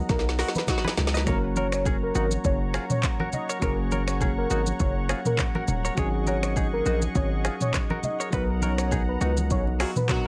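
Afrobeats excerpt at 102 BPM in F# major with a joyful, breezy, lightly swung 16th-note groove: a velvety synth lead with chorus and tremolo carries the melody over a hard-hitting, saturated 808-style bass and an up-front afro-pop drum kit with a deep kick, woody snare, metallic hats, snaps, claps, shaker, rim clicks and toms, while a bell-like tine electric piano, a vintage warbling analog pad with chorus and plate reverb, a twangy direct clean guitar riff with digital delay, thin-skinned congas and brief mellow horn-section accents near 0.4 and 9.8 seconds fill out Bmaj7, F#, G#7sus4 changes, with a drum fill and band accents opening the clip and further band accents returning at its close.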